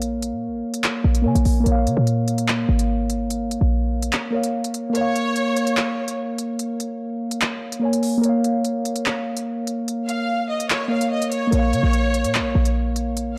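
Drill hip hop in a dark, menacing half-time groove, built on muted, felt-like synth keys that sound soft and warbling through chorus and a low-pass filter, with crisp hats and handclaps from an electronic drum kit. A punchy, tight 808-style bass hits under the opening before dropping away at 4.1 s, and the kick falls silent with it until both return at 11.5 s. A clear, lush studio violin section adds a bowed second line with vibrato and delay in two passages, first at 4.9 s and again at 10.1 s, all set in a moderate hall reverb within a dark production.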